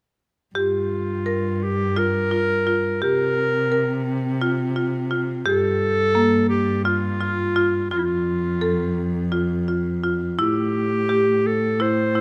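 Urgent and restless, this contemporary chamber piece in G dorian runs in an uneven 7/8 at 171 BPM counted in eighths, a short passage cut from a longer work, with all three parts playing from 0.6 to 12.2 seconds. A clear, present clarinet carries the melody up front in a classical solo style, while a marimba with medium hard mallets on padauk bars spins woody, percussive arpeggios of a dark yet smooth character. Underneath, one bowed cello holds the bass with a close, shadowy tone and vibrato, while the harmony moves from Gm7 through C7sus4, back to Gm7 and on to F and Am7, all in a light reverb.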